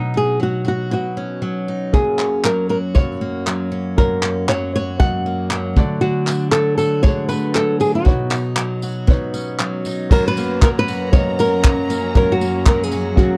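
Acoustic pop in F# major at 117 BPM with a swung sixteenth feel, easy-going and heartfelt, cut from a longer piece. A fingerpicked flamenco guitar carries the melody up front with audible finger squeak over a picked steel-string acoustic guitar with fresh strings. At 1.9 s a soft, felt-muted upright piano joins in the background, along with a vintage brush drum kit that has a punchy kick, dark cymbals, handclaps and tambourine in a small, pumping room; at 10.1 s a lush bowed string section with vibrato adds sustained chords, and the whole sits in a light reverb.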